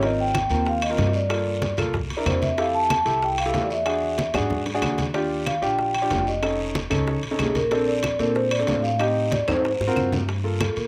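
Sophisticated and driving, this brief Afro-Cuban jazz excerpt at 187 BPM in a straight 4/4 features a mellow, close vibraphone played with soft mallets carrying the melody over a smooth, vintage grand piano, a woody pizzicato upright bass, thick low-tuned congas, tight high-tuned bongos, distant ringing timbales, raspy guiro with slapback echo and claves entering at 0.3 seconds, with drum fills at 4.2 and 9.5 seconds as jazzy chords such as Gm9, Ebmaj9 and Am7b5 pass in a dry, roomless sound.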